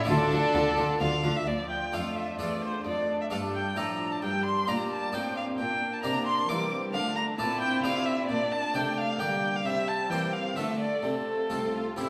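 Heard in a reverberant recital hall with a long 1.5-second decay, this festive baroque-style concerto movement moves briskly in 3/4 at 131 BPM, set in D minor before turning to F major at 6.9 s. An expressive, up-front solo violin with vibrato and portamento carries the high melody over a very quiet, focused violin section that also plays the melody, while a soft-attack second violin section sits in the background. A close-miked, dry harpsichord with octave strings sparkles through the accompaniment beside a smooth-topped viola section, and a lush cello section holds the bass, joined by the double bass section only from 0.1 to 1.3 s.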